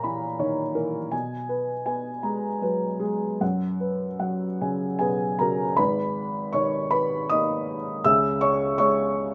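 A felt-muted upright piano plays alone from the first moment, its boxy, intimate tone sitting up front in a light reverb as this wistful, reflective neoclassical minimalist fragment unfolds in G# minor at 78 BPM in 3/4. The rubato phrasing gives the beats an uneven, breathing feel, moving from A#dim through G#m/B to F#sus4 across a range from G#1 to E6. At 5.8 seconds a new passage begins on G#madd9 and reaches C#m at 8.1 seconds before the cut from the longer piece ends at 9.3 seconds.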